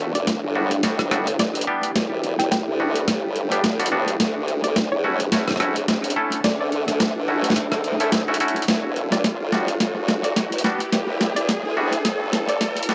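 A swung sixteenth-note groove in 4/4 drives this gritty, swaggering glitch hop passage, cut from a longer piece and built as one long build-up with a drum fill running throughout. Up front, a compressed, overdriven boom bap sampler-style kit snaps out hi-hat, rim click and a medium-tuned snare through analog delay, while a tight, layered electronic kick sits very quietly beneath it. A detuned, wobbling formant-sweep bass also sits up front, thickened with chorus and overdrive, as a twangy, stringy clav punches out clean stabs that pump against the sidechain and echo through delay. In the background, a woody wave-folded pluck carries a mellow, short-decay melody with chorus and delay, and a cloudy, evolving granular pad blurs underneath with its own reverb and pumping. An electronic riser enters at 2.2 seconds, and the harmony moves from Em7 to Dmaj9 and back to Em7, all set in an echo-heavy mix with a moderate spring reverb.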